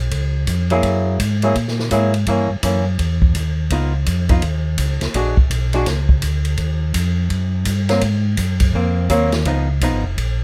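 A mellow tonewheel organ opens this soulful, swinging soul jazz organ trio excerpt, carrying the bass line in its low register with a round, dark tone colored by chorus vibrato and a slow rotary speaker. A swinging big-band drum kit joins almost at once, its punchy kick, medium-tuned snare, hi-hat and ride cymbal captured with a natural studio-room sound. At 0.7 seconds an archtop guitar, miked and amplified, adds accompaniment with a clean, hollow-body electric tone that is picked and compressed. The harmony moves through dominant and altered colors, passing from Db7 through Gdim7 and Bb7alt before settling back on Db9. Close, detailed microphones and little reverb keep the organ, drums and guitar up front and present, giving the trio an intimate, dry sound.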